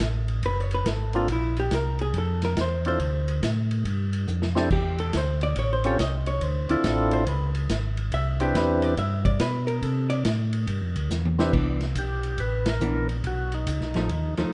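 A dark, lightly reverberant production with a rolled-off top frames this greasy, swinging soul jazz organ trio fragment. A mellow, round tonewheel organ carries the bass up front through chorus vibrato and a slow rotary speaker, while a punchy vintage kit in a small, pumping room adds dark cymbals and drum fills. A clean, compressed hollow-body archtop guitar solos up front until 11.5 s, a percussive organ with key click and its own slow rotary spin takes the melody, and a band accent lands at 12.6 s.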